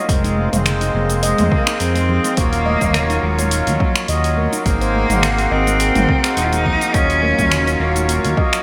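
A reedy, breathing harmonium pulsing with sidechain pumping and digital delay opens this hypnotic, earthy organic downtempo excerpt over a very quiet detuned analog pad, joined at 0.1 seconds by a rich, distant bowed cello melody with vibrato and delay, meditative handpan arpeggios touched by digital delay, a smooth gliding sawtooth synth bass sitting dark and up front, a punchy layered electronic kick, and a swung deep house kit of finger snaps, dark hats, shaker and toms bathed in gated reverb, while faint ringing congas arrive at 0.3 seconds, all within a bright 1980s-style digital production with moderate plate reverb.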